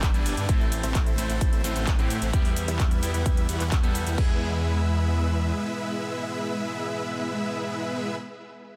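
Powerful and emotional, this short cut from a festival progressive house track opens in the middle of a drop, driven by a punchy, up-front electronic kick and a layered big-room kit of crash, ride, metallic hats, handclaps and shaker. A huge, thick supersaw carries the riff throughout, its detuned unison stack with a sub octave and vibrato held sustained, compressed and pumping under sidechain with delay trailing behind. Beneath it, a menacing detuned saw bass with tube saturation beats in the low register, also pumping to the kick. An electric guitar at the edge of break-up adds twangy, fingered accompaniment, sitting further back with spring reverb, delay and sidechain pumping. The drums drop out at 4.3 seconds and the bass at 5.5 seconds, leaving the supersaw and guitar to ride the harmony from A minor through E minor to a closing E major, all inside a dense, heavily limited modern master with little room sound.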